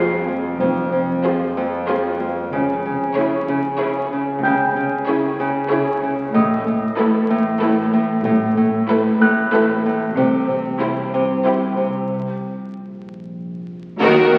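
A ringing Celtic harp riff sits up front in this eerie, mysterious cinematic excerpt in 3/4 at 94 BPM, joined by bowed string sections with lush vibrato, a clear, polished baby grand piano high above, a deep, rumbling, warbling drone underneath, cello and double bass sections entering at 0.6 s, and a dark French horn section that sounds only in the brief band accent at 14.0 s after a break, all set in a wet concert hall reverb and an aged 78 rpm sound with vinyl crackle.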